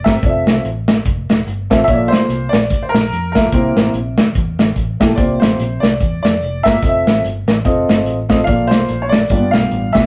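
A clear, worn grand piano carries the melody over a dark, round, foam-muted electric bass from the very start, joined almost at once by a woody, boxy upright piano with audible action noise and a tight, up-front acoustic drum kit of hi-hat, kick and snare, giving this swung, reverent and uplifting gospel snippet, cut from a longer piece, the rough, close feel of a rehearsal room as its chords move from Fmaj7 through C7sus4 to a closing G7.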